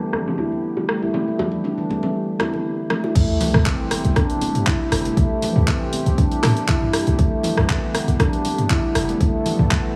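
An up-front stainless-steel handpan, ringing and airy under fingertips, carries this hypnotic afro house passage at 119 BPM in A minor. Its arpeggios are treated with sidechain pumping, a low-pass filter and dub echo, and swept by a filter through the opening 3.2 seconds. Beneath it sits a smooth, detuned sawtooth pad in the background, softly attacked with a long release, thickened by chorus and pumping as the chords move from G to Am7 and back to G. An overdriven deep house kit of crash, handclaps, hi-hat, rim click and toms plays alongside bright, hard-handed congas, while round, low-tuned bongos played with soft hands sit in the background only until 3.1 seconds. The drop lands at 3.2 seconds. A deep, overdriven electronic kick and a boomy, sine-based 808-style bass enter then, the bass carrying a noise layer, a fast attack and a decaying tail, together with a background sub drop and impact. 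The drums carry a small-room character, and the whole is framed by light reverb and digital ambience, with a gentle 16th-note swing keeping the groove loose.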